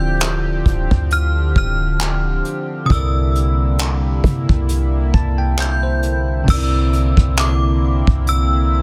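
Contemporary R&B at a slow 67 BPM in 4/4 with a light swing on the sixteenths, this short excerpt feels tender and smooth as it moves from Dm9 to C13 at 2.9 seconds and settles on C9 at 6.5 seconds. A chiming, inharmonic synth carries the melody high in its range, its ringing FM tone warbling through ensemble chorus and a digital delay. Beneath it, a bell-like tine electric piano plays bright, clean accompaniment and steps forward with a fill from 4.7 to 6.5 seconds, while a chorused pulse-width pad holds shimmering, retro chords. A deep, boomy 808-style bass with a sine-like, fast-attack tone sits up front alongside a vintage brush kit of tight kick, dark cymbals, hi-hat, rim click, handclaps and crash, which enters at 0.2 seconds and has a rolled-off top. The small room ambience frames a dense, heavily limited modern master.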